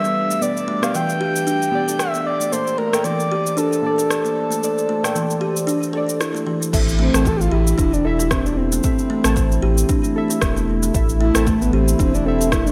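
A breathy, flute-like synth lead with vibrato floats up front over gritty, woody kalimba arpeggios, soft nasal chord stabs, a smooth, warbling vintage pad under a filter sweep that pumps along with the stabs, and a produced afro-pop kit of cabasa, crash and rim click in gated reverb, setting a meditative, hypnotic organic downtempo groove at 114 BPM in A minor with a light 16th-note swing, until a round, dark analog bass and a deep electronic kick arrive at 6.7 seconds, all set in a lush hall with bright 1980s-style digital production.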